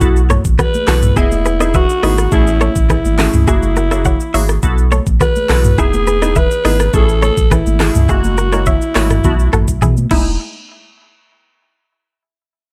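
A dry, close-sounding mix carries this breezy, joyful afrobeats passage in E major at 104 BPM, where a breathy, raspy alto saxophone sings the melody with vibrato and tape echo over a glassy, warbling wavetable pluck, a round sine sub bass, an up-front electronic afro-pop kit with knocking kick, crisp hats, claps, shaker and toms, a twangy clean electric guitar riff entering at 0.3 seconds, and thick-skinned congas in the background, before a drum fill at 9.8 seconds closes the section.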